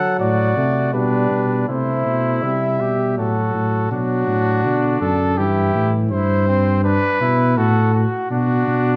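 A clear, present cornet opens this stately, joyful classical excerpt for brass ensemble, carrying the melody of an imitative canzona in C major at 82 BPM in a straight 3/4. Beside it from the first moment, a trumpet with light vibrato and a smooth top sings a second line, while a trombone, also touched with light vibrato, sits distant and roomy in the accompaniment. A dark, punchy tuba joins up front at 0.2 seconds to anchor the bass. The trombone drops out at 6.1 seconds, leaving cornet, trumpet and tuba to carry the passage through harmonies that move from D and G/B to C, then through F#m/A, Bm and Em/G. A recital hall reverb of moderate size frames the ensemble in a dark, warm production.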